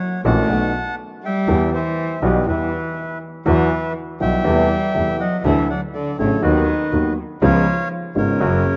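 Pushed and pulled in a free rubato over a 4/4 pulse, this dramatic, tense tango passage is cut from a longer piece. A reedy, smooth bandoneon carries the melody in its upper register, while a somber cello plays a close, expressive second line below it, bowed with vibrato and portamento. A woody upright piano sits up front with an open, long-sustaining tone, supplying the accompaniment from its low register upward. The bowed double bass holds the bottom with a soft attack and airy sul tasto playing, its tone nasal, pure and a little boxy. The harmony moves from B7 to Em in the first section, then a second section at 3.5 s drifts through Esus2, Amadd9/E, Dadd9 and B/D# before ending on C#7. A moderate plate reverb adds space to the rough home demo mix.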